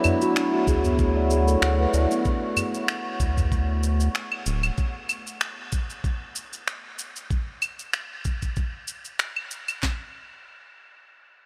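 Soaked in a huge, dreamy reverb, this earthy, peaceful organic downtempo fragment in 4/4 at 95 BPM sways with a light swing over a Dmaj7 chord. A reedy, breathing harmonium with gritty 12-bit sampler texture and a filter sweep, a ringing steel tongue drum playing arpeggios with rubber mallets, and a small acoustic udu open alongside a warbling, nostalgic lo-fi pad, with electronic claves, shaker and finger snaps. At 0.7 seconds a round, deep analog bass and an up-front afro-pop kit with handclaps, knocking kick and sharp snare join; the harmonium and tongue drum fall away by 2.2 seconds, and the pad and bass stop at 4.7 seconds, leaving the percussion.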